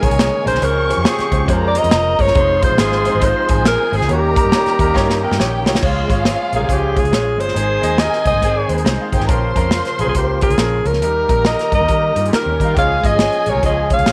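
An up-front alto saxophone with scooped, jazz-style notes sings an uplifting melody over a swinging 138 BPM 1960s-style soul groove. Bowed strings with expressive portamento, an intimate grand piano, a reedy, very quiet tonewheel organ with key click, a round, foam-muted fingered electric bass and a punchy, airy studio drum kit surround it, while a loose background horn section drops out at 8.8 seconds and returns at 12.8 seconds in this joyful excerpt.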